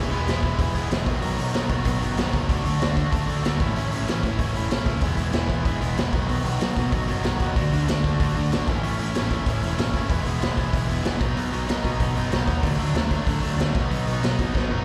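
The cranked stack guitar leads this short cut from a longer punk rock piece, its bright, double-tracked, overdriven riff sitting up front with a slapback echo as it drives through E major at 189 BPM in a straight 4/4. Beneath it, a growling picked electric bass adds its own overdriven bite, played both direct and amped. The raw garage drum kit comes in at 0.1 seconds with hi-hat, punchy kick and a medium-tuned snare, sounding gritty and saturated with a rolled-off top and a pumping small-room quality. The chords cycle through E, B, D and A, closing on B as a drum fill breaks out at 14.5 seconds. The whole performance comes across as a live gig heard through the venue's PA with the reverb of a recital hall, giving the rebellious, energetic playing a loose, roomy edge.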